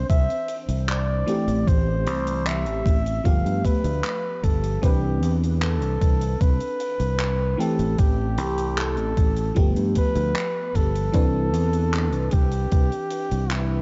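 A dark, reverb-soaked production with a muffled top end frames this dreamy, nostalgic vaporwave excerpt, cut from a longer piece. A breathy flugelhorn with vibrato carries the jazz-style melody through tape echo, over a lush, detuned FM electric piano with a soft pad layer, treated with phaser and chorus, as the chords move from Cadd9 through Am7 and G9 to Cmaj9. Underneath, a growly, punchy fingered electric bass sits up front beside a thumpy, sampler-style electronic kick, while a tight, airy metal drum kit adds handclaps and hi-hat from 0.1 seconds.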